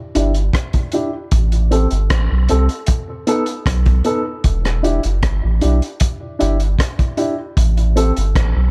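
A close, small-room sound with a light touch of reverb frames this spacious, hypnotic dub reggae passage, cut from a longer piece. A dark, woody upright piano plays short stabs through tape echo, with a filter sweep running across the whole passage, over a deep, round sub bass and a gritty, saturated breakbeat kit with a punchy kick, hi-hat and rim click. The harmony moves from Em7 through Am7 and B7 back to Em7, returning to Am7 at 7.6 seconds.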